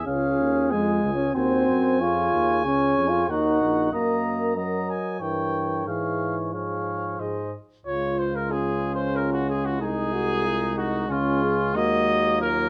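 In a stately 3/4 at 93 BPM with a straight feel, this classical brass quintet excerpt moves through Db major in a warm, dignified mood, cut from a longer piece. The trumpet carries the melody up front, its tone touched with light vibrato yet set back in a roomy, distant space. The flugelhorn sings a second line with a vintage, lightly vibrato-tinged color, while a clear French horn sits in the background as accompaniment. The close-miked trombone is the most prominent voice in the blend, and the bass trombone anchors the low end from afar. Chords pass through a diminished colour and an Ebm turn before settling on Ab, and a new section begins at 7.9 seconds, opening back on Db. A moderate large-studio reverb gives the ensemble a spacious finish.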